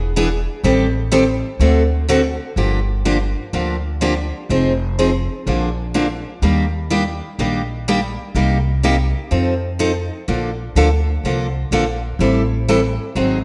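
A picked steel-string acoustic guitar sits up front, playing accompaniment over a woody, thumpy gut-string upright bass plucked pizzicato in this swinging, bittersweet acoustic string swing piece in G minor at 125 BPM, with the guitar entering at 0.2 s and lush hall reverb giving the mix a dreamy, soaked sheen.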